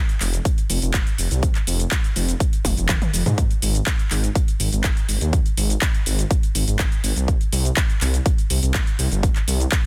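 Uplifting and expansive, this progressive house excerpt moves at 123 BPM in a straight 4/4, tuned slightly low. A deep house drum kit sets the groove almost from the first moment, with handclaps, metallic hats, shaker and toms given an overdriven edge and a pumping sidechain on the percussion, hats and toms. A dark, detuned saw bass enters at 0.2 seconds, rumbling and beating between F1 and Ab2 with a saturated, sustained tone that also pumps. The punchy, layered electronic kick arrives at 0.5 seconds and sits up front, with a drum fill between 2.6 and 3.4 seconds. The mix is dry and dense, heavily limited in a modern style, and the clip is cut from a longer piece.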